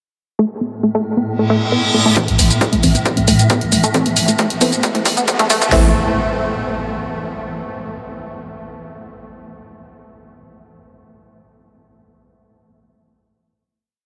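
Soaked in a vast, dreamy reverb, this short, hypnotic peak-time techno piece opens at 0.4 seconds with a tight, sawtooth sequenced synth riff whose filter sweeps through a five-step loop drifting against the bar, joined by a swarming, detuned drone, background reverse cymbal, riser and impact effects, and, from 2.2 seconds, a four-on-the-floor kit with a punchy kick and cracking snare, programmed tape-warm hats and shaker, and sparse echoing dub chord stabs, with a growling, buzzy 808-style bass arriving at 2.3 seconds and rumbling between the kicks as a build and drum fill lead to a final chord at 5.7 seconds.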